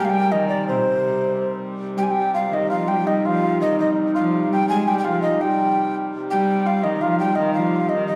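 Medieval dance in a driving, mysterious triple metre, cut from a longer piece, where a breathy, chiffy tenor recorder carries the melody up front while a shimmering hammered dulcimer and a rich, biting, fretted viola da gamba play second lines over a nasal, reedy hurdy-gurdy drone, with a new section arriving at 1.8 seconds and the sound set in the lingering reverb of a recital hall.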